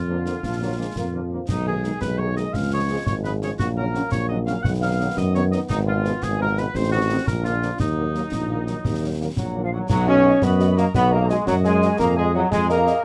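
A light reverb surrounds this wind band recording, with the tuba placed up front and much of the brass set back behind it. It is a resolute, martial military-style march in six-eight, cut from a longer piece, and most of the band sounds from the very start. The warm tuba carries the bass line in a classical style, while roomy, distant trombones hold sustained chords and a tight woodwind section touched with vibrato plays a second line. The trumpet section's melody sits in the background, far off and reverberant, and the French horns add a mellow, vintage accompaniment with light vibrato. Concert snare drum, concert bass drum and clash cymbals sound close and dry, the cymbals dark in tone. At 9.4 seconds an airy small flute group joins with a tongued, softened second line, just before a new section begins at 9.9 seconds.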